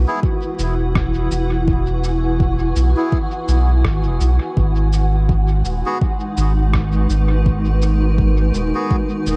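A hazy, deep ambient dub fragment in G# minor at 83 BPM with a swung 4/4 feel opens on a blurred, evolving granular cloud pad carrying its own reverb, a round, up-front sine sub bass and an airy, wind-like tuned noise layer in the background; a reedy, nasal melodica adds echoing stabs from 0.1 s, while a deep electronic kick and a muffled, pitched-down cabasa and rim click with dub echo ride a move from E to G#m7 at 4.6 s, all inside a dark, dry production flecked with vinyl crackle.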